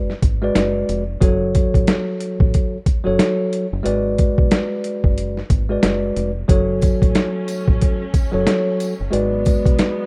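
Gritty and moody, this boom-bap hip-hop excerpt sets a bell-like tine electric piano, given a cassette-tape tint, over a dark, round fingered electric bass and a compressed, pitched-down sampler-style drum kit with a thumpy kick and medium-tuned snare, swinging between G#m7b5 and F#m, until a distant, lush bowed string section slips in at 6.5 seconds and a jingly tambourine follows in the background around 6.8 seconds, all within a rough home-demo mix.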